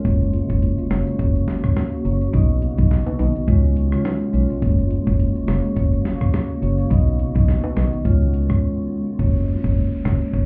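A lightly swung 105 BPM dancehall groove in F# major, sunny and summery, rides on a gritty, compressed sampler-style soul drum kit with a thumpy kick and fat snare up front beside a hollow, dark, organ-like FM bass, while a warm marimba played with medium mallets, a cloudy granular pad with sidechain pumping that stops at 9.2 seconds, close and dry maracas and timbales, and a faint electronic downlifter arriving at 9.2 seconds after a brief break from 8.6 seconds are heard muffled as if through a wall, with club reverb and vinyl crackle, in this snippet cut from a longer piece.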